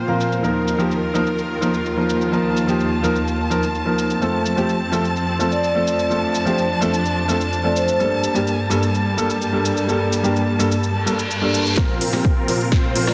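Drenched in a lush hall reverb and pressed into a dense, heavily limited master, this euphoric, triumphant festival progressive house excerpt opens on clear, close bowed strings holding pumping, filtered chords beneath an up-front vintage baby grand piano and a mellow soft-mallet vibraphone whose ringing, metallic phrases pass through digital delay. A big-room dance kit of crisp hats, rim click, shaker and a softly clipped snare, tape-tinged and re-recorded in a large room, sits under a low-pass filter, while an electronic reverse cymbal and riser enter at 11.0 s. At 11.8 s the build-up arrives with a drum fill, a punchy electronic kick and a huge, thick, detuned supersaw riff swept by a filter.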